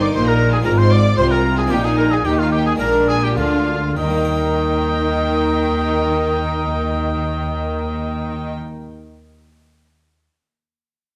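A lightly vibrato solo oboe carries the melody in this festive, brilliant excerpt from a baroque-style concerto movement in Eb major, moving in straight 4/4 between 101 and 118 BPM and slowing over the first 4.0 seconds, as a rich, distant chamber violin section shares the melody high above, smooth studio violins hold a second line, expressive violas and a round, plucked harpsichord accompany in the background, and distant cellos join an even, up-front double bass section on the bass, all set in a moderate recital hall reverb before the phrase settles on Eb at 4.0 seconds.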